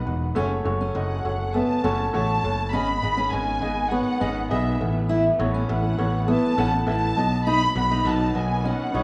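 Piano-driven pop at 101 BPM in 4/4 with a hopeful, anthemic mood, this short excerpt sets a lush, vibrato-rich symphonic violin section carrying the melody over a polished baby grand piano, a very quiet bowed string section holding soft-attack chords, a growly, punchy picked electric bass entering at 0.1 seconds, and a fingerpicked steel-string acoustic guitar riff with fresh strings and audible finger squeak joining at 0.4 seconds, all moving through F#m, G#m, Asus2 and B in a rough home demo mix with small room reverb.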